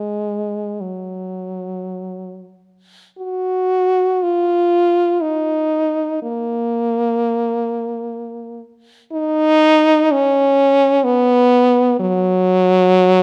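A close, detailed recording places a single French horn up front in a moderate recital hall, whose reverb of about 1.5 seconds gives each note a gentle halo. This is a free, expressive classical piece for unaccompanied horn, played in free time with a nostalgic, serene mood. The horn sounds clear, with a soft attack and vibrato, moving between Gb3 and Gb4 in a classical style. After a brief opening phrase, the music settles into Eb minor from 3.2 seconds, and the solo line continues alone until the passage is cut off at 13.2 seconds, as it is taken from a longer piece.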